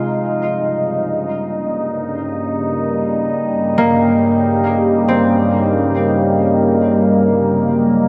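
Unfolding in free time, this short ambient passage, cut from a longer piece, feels reflective and spacious. An evolving wavetable pad sits up front, holding sustained chords from G2 to Ab4; its detuned, sine-like tone warbles and morphs with a vintage character, shaped by a slow attack, long release, phaser and its own built-in reverb. Beneath it, a concert harp plays fingerpicked arpeggios between Bb3 and F4, its acoustic, ringing strings softened by a diffuse ambient delay. Both parts fade in together across the full 8.1 seconds, drifting from an Eb7/G chord at 0.1 seconds toward a Gb(#11) harmony at 7.1 seconds. A drenched cathedral reverb with a 5.0-second decay places the whole sound in a vast, echoing space.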